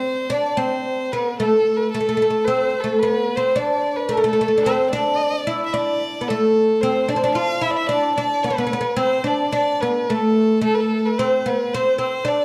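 Melancholic and soulful, this short passage from a longer Turkish makam ensemble piece moves in a straight four-beat metre, tuned slightly below standard pitch to A4 = 439 Hz. A fretless oud carries the melody from beginning to end, its plectrum-plucked double strings giving a woody, acoustic tone that sits up front in the mix. Above it, a single bowed violin plays a second line throughout in a higher register, its tone rich, smooth and even, with vibrato and a close presence, set lower in level than the oud. The two instruments share a recital hall reverb that adds a lingering tail, and the overall production is dark and warm.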